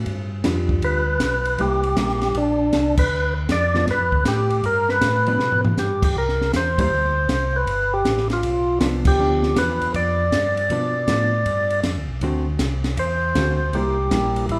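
A mellow tonewheel organ opens the excerpt, holding down the bass line with a round, dark tone lightly roughened by overdrive and shaded by chorus vibrato and a slow rotary speaker. A compact cocktail drum kit joins at 0.1 seconds, its high-tuned snare, punchy kick, hi-hat, ride, crash and toms sounding smooth and rolled off at the top, and a clean, compressed hollow-body electric guitar follows with fingered accompaniment. At 0.8 seconds a percussive tonewheel organ takes the melody up front, warm and fat, lightly overdriven, with second-harmonic percussion and its own slow rotary spin. This greasy, swinging soul jazz organ trio moves at 158 BPM in 4/4 with a swung eighth-note feel, cycling through G7 and C7 in G mixolydian before touching D7 near the close. The band hits accents together at 2.9 and 9.0 seconds, with a short drum fill between them, all set in the moderate reverb of a recital hall.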